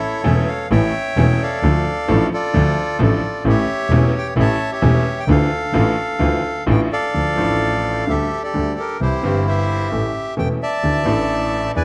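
Tango cut from a longer piece, passionate and sultry with a rubato feel, where a reedy, bright bandoneon carries the melody up front from the opening, a woody, smooth upright piano with a vintage tone accompanies from 0.2 seconds, and a single bowed double bass with a biting, earthy edge and light vibrato holds the low end, all set in light reverb under a layer of vinyl crackle.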